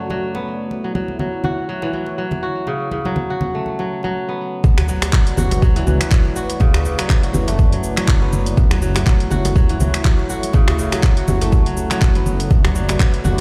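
A crisp, fingerpicked kora plays ringing arpeggios from the start of this cut from a longer afro house track, set over a mellow, chorused analog pad of sustained chords in the background, with bright, thin-skinned congas entering just after. The mood is warm and driving at 122 BPM in 4/4, with a light swing on the sixteenths, and the harmony moves between Bm7/F# and F#m7. The drop arrives at 4.6 seconds, bringing in a deep, tape-toned electronic kick up front, a cracking djembe with metal rattles, and a layered, overdriven deep house kit of cabasa, finger snaps, handclaps and hi-hat, its percussion, snare, hats and room softened by low-pass filtering. At 5.4 seconds a dark, rumbling detuned saw bass joins, saturated and beating, pumping with sidechain compression along with the pad and kora, whose notes also carry a digital delay. The whole track sits in a large studio reverb, sounding like a big system playing in a bare room.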